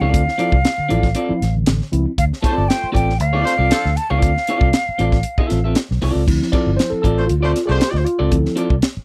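A tight, straight 4/4 funk groove at 117 BPM drives this hypnotic D minor excerpt, with a dry drum kit (high-tuned snare, tight kick, hi-hat and crash) and a dark, round, foam-muted fingered bass sitting up front over a Dm7 chord. A breathy, hollow silver flute carries the melody with vibrato until 5.6 seconds, supported by a compressed, slightly broken-up picked electric guitar, clean tine electric piano stabs, and a horn section with light vibrato adding a second line from 2.5 seconds. At 6.3 seconds the mellow electric piano takes a solo, all captured in a close, dry 1970s-style studio sound.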